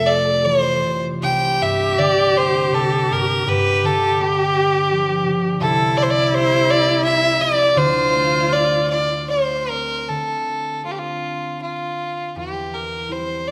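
Celtic folk slow air in D minor, mournful and haunting, drifting in a rubato 3/4 at around 73-85 BPM, cut from a longer piece. An up-front fiddle carries the melody with a biting, earthy tone and light vibrato, while a nasal, focused viola sings a second line beneath it until 9.6 seconds, and a mellow concert harp, plucked with the thumb, rings out the accompaniment through chords such as Fmaj7, G7 and Dm7. A moderate concert hall reverb gives the trio a spacious glow as the air moves into a new section at 10.1 seconds.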